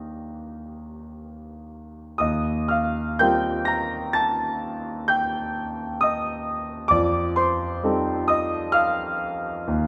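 A clear, up-front concert grand piano opens on a luminous Ebmaj7 and drifts through hazy Eb lydian harmony in a rubato 5/4 at 51-68 BPM, its open sound reaching from a deep bass up to high notes as the chords move to Eb69 at 2.2 seconds and F13 at 6.9 seconds, all bathed in a moderate scoring-stage reverb in this brief impressionist classical excerpt cut from a longer piece.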